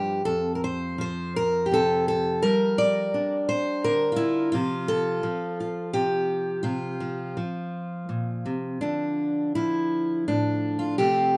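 A moderate studio reverb gives this short folk piece, cut from a longer work, a gentle sense of space around a bright, up-front fingerpicked steel-string acoustic guitar playing alone. In an unhurried, rubato three-beat feel, the guitar moves through F5, Gm7 and Csus4 colours, spanning from its low register up into its upper range. At 8.8 seconds it settles onto a Dm chord as a new passage begins, sustaining the nostalgic, gentle mood.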